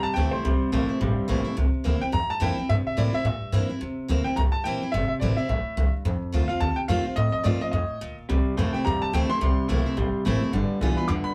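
Retro and rowdy, this swinging rockabilly fragment sets a clear upright piano, its action noise audible, on the melody over a full-bodied picked steel-string acoustic guitar and a thumpy pizzicato upright bass with gut strings, while a twangy, slightly broken-up electric guitar through a small old amp plays its riff at the opening, drops out at 1.6 seconds and returns at 8.3 seconds, the band heard live together in a small, wet-sounding room as the chords move from C7 through F7 and back to C7 before reaching G7.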